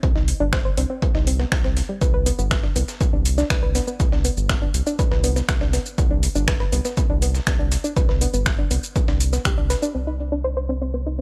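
A punchy electronic kick sits up front in this driving, melancholic melodic techno excerpt at 121 BPM, with a deep, dark analog bass pumping against it beneath a soft, nasal, detuned pluck that spins chorused, delayed arpeggios while a filter sweep moves over it until 9.9 s. Metallic hats, finger snaps and shaker from a layered house kit pump as well, and a gritty, compressed sampler-style kit adds filtered hi-hat and a medium-tuned snare, all in a small, dry room. The harmony moves from Gadd11 to G, then shifts to C minor at 9.9 s, where the bass and pluck carry on alone to 11.2 s.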